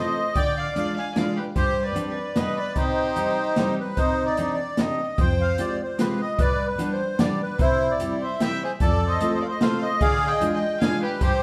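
A lilting 3/4 pulse at 149 BPM, with a gentle swing on the eighth notes, drives this nostalgic, bittersweet musette waltz in C harmonic minor, cut from a longer piece. The reedy, sweet accordion carries the melody up front throughout, its light tremolo tuning giving the line a shimmering edge. A single bowed violin adds a second line with light vibrato, sounding biting yet nasal and earthy; it drops out around 3.8 seconds and returns at 8.2 seconds. Underneath, a fingerpicked jumbo steel-string acoustic guitar with fresh strings provides full-bodied accompaniment close to the listener, while an open jazz kit of hi-hat, medium-tuned snare and boomy kick sits dark and smooth in a small room. The chords move through diminished and suspended colors into minor add-nine voicings, and the whole band, playing live together, is bathed in a stony room reverb.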